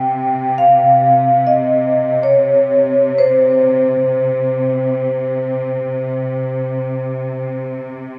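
In free time and C Phrygian, this mournful, longing Caucasian lament sets a metallic, ringing vibraphone melody with soft mallets and a fast motor vibrato up front over a lush, bowed cello-section drone on C3, all bathed in a dark church reverb that lingers about 3.0 seconds as the excerpt slows from 3.6 seconds until it ends at 8.2 seconds.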